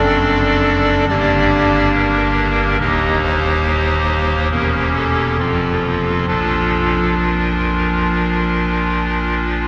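In a steady, straight 4/4 at 69 BPM, this majestic, reverent classical chorale for solo pipe organ in Bb major uses a hollow clarinet reed stop with baroque voicing, chiff and tremulant, moving from D7/F# through Gm, Eb and Edim7 to F and a settling Bb at 6.3 seconds, all heard from further back in a cathedral whose long, wet reverb lingers around the chords in this short fragment of a longer piece.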